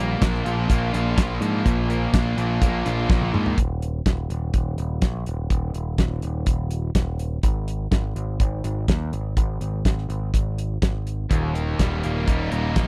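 A dry, close 1970s-style studio sound frames this swaggering, driving classic rock excerpt in Eb major at 124 BPM in a straight 4/4, moving from Bb through Eb5 and Ab5 back to Eb. A bright, compressed, picked distorted guitar and a dark, sludgy overdriven one share the riff at the opening and return at 11.3 seconds, while an up-front, growling picked bass with overdrive drives all the way through. Entering at 0.2 seconds, a damped acoustic kit with a fat snare, tight kick and rolled-off top plays hi-hat, kick, snare and toms, and throws in a fill just before the second section begins at 3.6 seconds.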